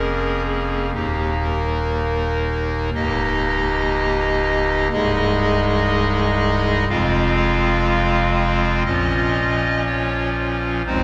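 Classical chorale-style music for solo pipe organ, reverent and majestic, moving at 61 BPM in 4/4 with a rubato feel across this short 11-second excerpt cut from a longer piece. The organ's clarinet reed stop carries a hollow, romantic voicing with tremulant, sitting prominently as a solo stop and spanning C1 to F5 through a chord progression that opens on Bbm7/F and settles on Bbm. A resonant church reverb surrounds it, heard from further back in the room.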